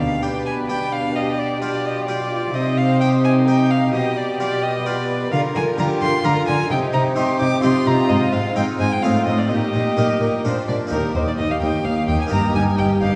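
Heard from further back in a concert hall with a lush, reverberant wash, this short, dramatic cut from a baroque-style concerto movement drives forward at 129 BPM in a straight 3/4, settling into Eb major from 5.3 s. A solo violin carries the melody with a focused, vibrato-rich tone and a smooth top, joined by a very quiet, intense chamber violin section that also carries the melody. A brilliant, plucked harpsichord in Italian style, with its octave strings ringing, fills out the accompaniment alongside a distant, even viola section, while a second violin section adds a lightly vibrato, smooth inner line in the background. Up front, a full symphonic cello section anchors the bass with a deep, bowed tone, and a chamber double bass section joins it at 10.9 s to deepen the low end. The harmony moves from G-based chords through C minor and F seventh sonorities before arriving on Eb, giving the passage a purposeful, urgent sweep.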